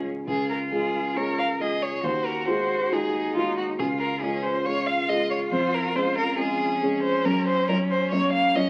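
Quick classical-period movement for piano trio in Db major at 138 BPM, played with stormy, dramatic rubato in a short fragment cut from a longer piece. A warm, expressive violin carries the melody up front with vibrato and portamento, a clear, focused cello sings a close second line, and a dark, worn baby grand piano supplies mellow accompaniment moving from Db through Ab7/Eb and Db/F to Gb. The trio sits in a moderate large-studio reverb, heard through the crackle of a very old 78 rpm record.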